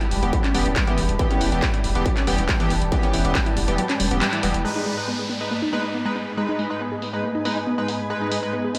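A straight 4/4 pulse at 139 BPM drives this hypnotic, relentless stretch of peak-time techno in G# harmonic minor, cut from a longer piece. A distorted electronic kick, re-recorded in a large room, pounds until 3.4 s, while the techno drum kit's warm, filtered hi-hats and crash cymbal pump against the sidechain alongside handclaps. A deep, thick saturated sub bass holds E1 under the opening Em, then drops away at 4.6 s as the harmony turns to G#m and the drums and synth sound sweep through a filter. On top, a lush, punchy unison pluck riff with tube saturation and analog delay sits alongside edgy, nasal chorused stabs from a sync-sweep polysynth that stands up front with cassette tape colour and tape echo. A swarming, tense drone and a cloudy, blurred granular pad drift mellow in the background, and an electronic downlifter falls through the second half until 8.1 s, all soaked in a dreamy hall reverb.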